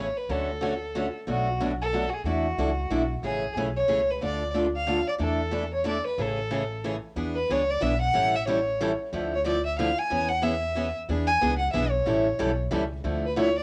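A swinging 3/4 lilt at 184 BPM drives this short, playful slice of acoustic string swing in A major, its chords moving from Dmaj7 and Bm7 through E7sus4 to Amaj7 before shifting to a passage built on E7, A7 and Dmadd9 at 7.2 s. A single bowed violin carries the melody up front with smooth, even vibrato and a rich tone, while a bright, boxy parlour steel-string guitar picks the accompaniment close by, finger squeaks audible, both colored by cassette tape and plate reverb. Underneath, a woody, thumpy pizzicato upright bass on gut strings sits dark and low in a small room, giving the charming home cassette recording its gentle bounce.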